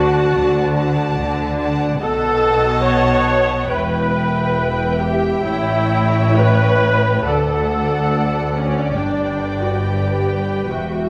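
Classical string orchestra music in a slow, romantic vein, this tender and lyrical passage unfolds in rubato over a gently shifting harmony, cut from a longer piece. Muted violins carry a lush, veiled melody above a second violin line, while the con sordino violas sit up front with a soft-attacked accompaniment and the distant cellos and double basses supply a dark bowed bass. All five sections play throughout the 11.1 seconds, bathed in the wet bloom of a scoring stage's reverb.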